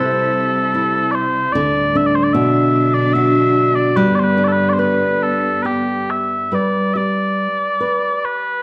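Wistful and tender, this rubato Celtic slow air in three sets mellow, sweet small bagpipes with vibrato up front over fingerpicked flamenco guitar with audible finger squeaks, while a clear, smooth-topped symphonic string section holds bowed chords until 6.5 seconds, all bathed in a wet recital hall reverb in a passage cut from a longer piece.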